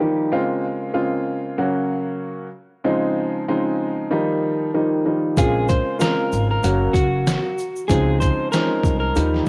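A small-room home recording with cassette character opens on a dark, mellow upright piano, up front and moving through Bbm7, Gb, Dbmaj7 and Ebadd9 in this reflective, moody boom-bap hip-hop excerpt at 95 BPM with a swung 16th feel. At 5.4 seconds a gritty, pitched-down, overdriven sampler-style kit with a thumpy kick and medium-tuned snare arrives alongside woody pizzicato upright bass and a grainy egg shaker in the background. A slightly broken-up electric guitar carries the melody through spring reverb and analog delay, after a brief touch at the very start.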